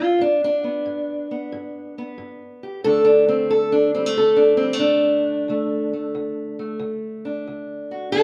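A roomy, live-in-one-space sound with a moderate large-studio reverb frames this soulful, swaggering acoustic country blues fragment at 91 BPM in a swung 4/4, where a lone fingerpicked parlour steel-string guitar, up front, dark and boxy with the woody tone of old strings, moves from G to D5 across a range of D2 to A4 over its 8.2 seconds.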